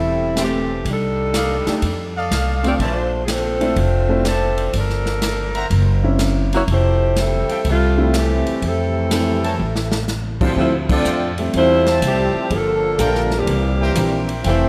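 A swung 4/4 pulse at 124 BPM drives this joyful, energetic big band swing excerpt in F major, where an up-front, smooth-topped saxophone section carries the melody over a woody, thumpy pizzicato upright bass, a present grand piano with long sustain, tight trumpet-section stabs with a soft attack, and an airy, polished drum kit with dark cymbals and a punchy kick, while a trombone section joins in the background on a second line from 8.6 s, with a drum fill at 9.6 s and a band accent at 10.8 s, under light reverb.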